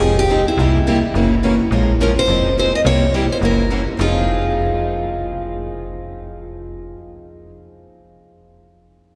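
A fast swing at 211 BPM in 4/4 drives this short excerpt of acoustic string swing in F minor, its eighth notes carrying a light lilt. A picked steel-string guitar takes the melody from the start, its fresh, bright strings and boxy parlour tone sitting up front with an audible finger squeak, while a second picked guitar plays the accompaniment beside it with a similarly crisp, close presence. A third guitar doubles that supporting role further back in the mix, quieter and more distant. Underneath, a slap-like FM bass adds a snappy, metallic, digital attack that then decays. The changes move through minor sevenths and dominant chords such as Fm9, C7, Gb7 and Bbm7, with a second section arriving at 4.0 seconds. The whole performance is bathed in a cavernous cathedral reverb, giving the swinging, virtuosic playing a resonant, hall-like glow.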